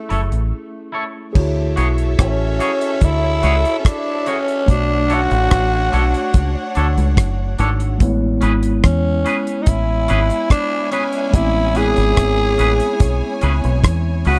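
A dry, close 1970s-style studio sound in a small room carries this longing, smooth lovers rock reggae excerpt, where a raspy, growling tenor saxophone with tape echo leads up front over a mellow tine electric piano that shares the echo, twangy guitar stabs bathed in spring reverb, a round, punchy fingered dub bass and a damped drum kit with dark cymbals and a tight kick, with a short break at 0.5 seconds before a lush, even violin section enters at 1.4 seconds with a bowed, vibrato second line.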